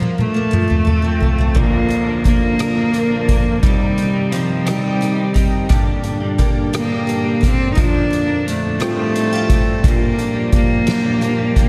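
This swaying, heartfelt pop ballad in six-eight opens on a soft-mallet drum fill, with dark cymbals and a boomy kick up front, as a clear, intense bowed cello carries the melody over a woody, picked steel-string acoustic guitar, double-tracked in the background. The tempo is a slow 58 BPM in Bb major, and the cello's smooth top and vibrato sit under a diffuse ambient delay. At 1.5 seconds a gritty, overdriven tonewheel organ joins with thick sustained chords, its key click and percussive attack colored by chorus vibrato and a slow rotary speaker. At 1.6 seconds a clean, compressed electric guitar, recorded direct, adds arpeggios through an analog chorus, low in the blend. The chords move gently from Bb through Cm and Gm to a closing Bb6, and a moderate plate reverb gives the whole passage a dreamy glow, a passage cut from a longer piece.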